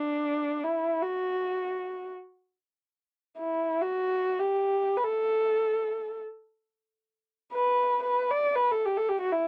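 A dry, close 1970s-style studio sound with light reverb frames this brief fragment of Persian modal music, cut from a longer piece in free time and set in the D dastgah mahur. A single bowed kamancheh plays alone and up front from 0.0 to 9.5 seconds, staying between D4 and D5 with a dark, woody tone, a smooth top, vibrato and gliding portamento. The mood is stately and passionate.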